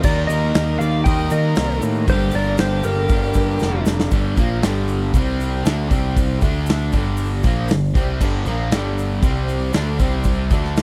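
Driving and brooding, this classic rock excerpt in G minor moves at 118 BPM in a straight 4/4, with a punchy, up-front drum kit ringing in a bright stone room and a growling, overdriven picked bass anchoring three background riff guitars: a crunchy overdriven one, a distorted one and a double-tracked cranked stack. For the first 3.8 seconds a twangy, compressed lap steel with slapback echo carries the melody over a dark octave-fuzz lead playing a second line, before a drum fill at 3.6 seconds leads into a new section where the chords shift between C5 and D5 power chords and G minor. A grainy egg shaker sits far back throughout the dry, close 1970s-style studio sound.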